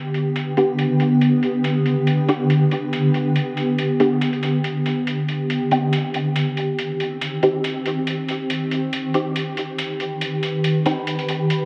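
Meditative and heavy, this deep dubstep excerpt moves at 140 BPM with a half-time, lightly swung feel in C harmonic minor, its harmony shifting from G to C minor at 5.5 seconds. An up-front granular cloud pad holds blurred, evolving triangle-wave chords from the start, while a muted sawtooth dub chord stab plucks short, chorused hits through dub echo under a filter sweep that spans the whole passage. A gritty, pitched-down electronic hi-hat with a tape-warm, low-passed tone sits beneath, all set in a lush hall reverb with bright 1980s-style digital production.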